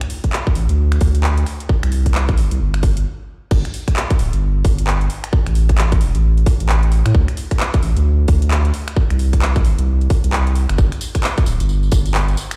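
This UK garage excerpt in a two-step style moves at 132 BPM in 4/4, with a 61% swing on the sixteenths that gives it a moody, bouncy lilt. A layered, produced electronic drum kit with metallic hi-hats, crash cymbal, finger snaps, handclaps and tambourine sits lower in the mix, while a tight electronic kick sits up front. The saturated sub bass enters at 0.6 seconds: a deep, thick, sine-like tone with a fast attack and sustained notes ranging from D1 to A2, pushed forward alongside the kick. After a brief stop at 3.1 seconds, the drop lands at 3.5 seconds and carries the groove through to the end of this cut from a longer piece. The sound feels like a big sound system playing in a bare room, wrapped in a large studio reverb.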